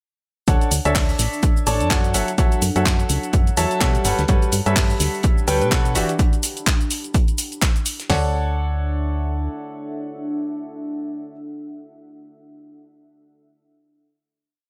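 A whole piano house piece, joyful and uplifting, opens at 0.5 s straight into the drop: a clear, woody upright piano plays a rhythmic close-voiced chord riff up front, pumping with the sidechain and trailed by a digital delay, over a round, punchy FM bass that carries a funky syncopated line. Beneath them, a tape-warm analog drum machine drives a four-on-the-floor kick with a punchy snare, open hats and floor tom. It is layered with a house kit of shaker, hats and claps re-recorded in a small room, and a very quiet, cloth-damped acoustic breakbeat loop with a fat snare and rolled-off top. A deep, moody sawtooth pad with a sub octave fades in slowly behind, its chorused, reverberant chords breathing with the pumping. At 5.5 s a bright, detuned square-wave lead slips in briefly from the background for a catchy short answering phrase coloured by phaser, vibrato and a filter sweep. The drums drop out at 8.1 s, and the bass carries on a little longer as the piano and the dark pad ring out on a final Dmaj7 in a lightly reverberant space. 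The swung sixteenths and jazzy seventh and ninth chords give the whole thing a buoyant lift.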